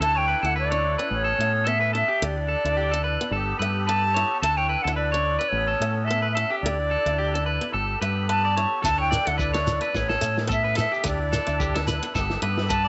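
Joyful and carefree, this highlife guitar band excerpt moves at 109 BPM in a swung 4/4, cycling through suspended and add9 chords while an airy, vibrato-rich silver concert flute carries the melody up front. A boxy picked acoustic guitar and a reedy, shimmering musette accordion fill out the harmony, a twangy, slightly broken-up electric guitar adds arpeggios with slapback echo, and a round, dark fingered electric bass sits forward underneath. At 8.8 seconds, a gritty breakbeat kit with a punchy kick and a grainy, close shekere join in, all within a small, lightly reverberant room with a gently rolled-off top.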